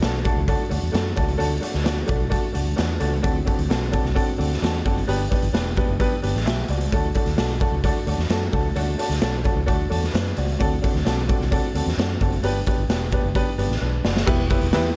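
Piano, bass and drums start together in this joyful, danceable clip of uptempo 1960s-style soul at 130 BPM in D major, where a woody, slightly detuned upright piano sits up front over a round, foam-muted electric bass and a gritty, saturated garage drum kit with a punchy kick and a pumping stone-room sound, moving through D, D7 and G to a drum fill at 13.8 seconds before landing on Em, all in a dark, dry production.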